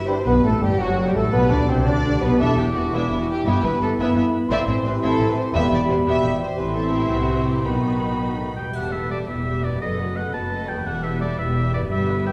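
Urgent and dramatic, this fast, rubato romantic orchestral passage in 6/8 at 114 BPM, cut from a longer piece, moves from G major into E minor at 4.5 s, with a lush bowed violin melody over a second violin line, distant viola, harp arpeggios in the background, and rich double basses with cellos on the bass, while pure flute, light-vibrato bassoon and very quiet mellow French horns drop out near 8.6 s, when a bright, up-front oboe takes over the second line and a soft triangle touch sounds, all set back in a reverberant recital hall.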